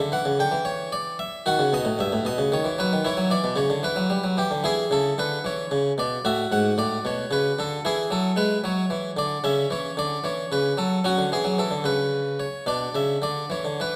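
A solo harpsichord carries this short classical excerpt, a baroque-style suite movement with a radiant, dance-like character. The instrument has a round, full, plucked French-style voice on a single set of strings, heard close and up front, with a dry attack set inside a lingering recital-hall reverb of about 1.9 seconds. The movement sways in 12/8 at 75 dotted-quarter beats per minute, its rubato giving the dance a flexible, breathing pulse. Spanning G2 to G5, the harmony opens in E minor, turns through B and back, then moves through F-sharp minor and E before settling on B minor by 12.7 seconds. Tuned slightly high at A4 = 443 Hz, the recording is cut from a longer piece and captures fine detail in the instrument's sound.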